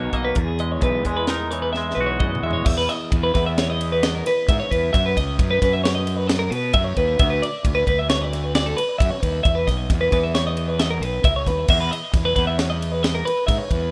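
In a straight 5/4 at 133 BPM, this bright, intricate math rock and midwest emo excerpt in E lydian rides on a crisp fusion drum kit with a high-tuned snare and punchy kick that throws a fill from 1.7 to 2.7 seconds. A clean twelve-string electric guitar spins tape-echoed arpeggios up front, and a round, fuzzed fingered bass drives beneath. A warm, clean, twangy fingered guitar accompanies only until 4.9 seconds, while chords move from Emaj9 through F#7sus4 and Dsus2 back to Emaj7(no3), all in a rough, small-room home demo mix.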